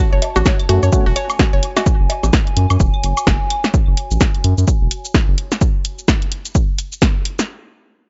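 Minimal techno at 128 BPM in F# minor, sparse and cool, with a swung 16th-note feel in this snippet from a drop. A woody, bright FM pluck riff with a chorus and analog delay plays only for the first 1.8 seconds, and a dark, hollow organ stab sounds briefly around 0.7 seconds. A lo-fi, detuned pad warbles underneath, with a pumping sidechain and its own reverb. A thick, saturated sub bass and a punchy, up-front electronic kick anchor the groove, and a tape-toned analog drum machine adds hi-hat, shaker and snare. Delayed cowbell, bongos, woodblock and claves sit lower in the mix, and the whole recording has a dry, gritty hardware character with a dull top end.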